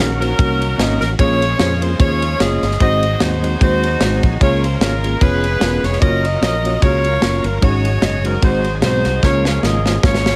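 A tight funk drum kit drives this uptempo gospel excerpt with a light swing, its kick, snare and ride cymbal sounding close and up front with a rolled-off top, and a drum fill closes the passage from 9.2 seconds. A punchy fingered electric bass sits beneath it, direct and amped, while a mellow tine electric piano supplies clean accompaniment through its built-in speakers. Behind them, a bright, shouting tonewheel organ holds sustained chords in the background, lightly overdriven with key click, chorus vibrato and a slow rotary speaker. Up front, a clear, tight saxophone section carries the melody in a pop style, touched with slapback echo. The chords move from Ebm7 through Bbm7 and Ab7 to Db6, then on to Gbmaj7 and a suspended Ab7 before settling back home, giving the piece a reverent yet uplifting lift within a light reverb.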